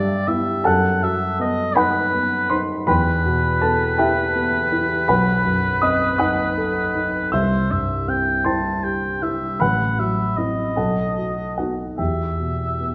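A slow, rubato 6/8 pulse at 49-55 BPM in dotted quarters carries this solemn, yearning romantic classical duo in E minor, cut from a longer piece. A warm oboe with light vibrato sings the solo melody between B4 and A5 throughout its 12.9 seconds, while a dark, mellow baby grand piano accompanies across a broad span from A1 to F#6, moving from Em/G through B7b9, C and F#m7b5/A before settling back on Em at 12.0 seconds. The duo sits in a wet recital hall reverb that gives the oboe a roomy presence.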